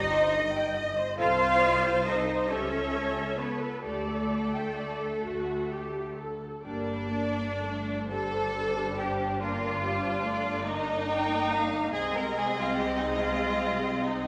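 Heard through the wet bloom of a scoring stage, with a reverb tail of about 1.9 seconds, this slow, melancholic and solemn movement for string orchestra unfolds in G minor at 40-49 beats per minute in a rubato 6/8, as a passage cut from a longer piece. A focused first violin section carries the melody between A4 and G5 with vibrato, while a second violin line sits up front, smooth and even, ranging from D4 to F5. The viola section adds a warm accompaniment with portamento. Below them, the cellos sound distant and the double basses bring an expressive, lush depth reaching down to G1. The harmony moves from Cm through Adim/C, A7/C# and Dsus4 to D, before the second section opens on Gm at 6.6 seconds and shifts to Ab/C at 11.9 seconds. The five string sections play together throughout, tuned slightly low at A4 = 436 Hz.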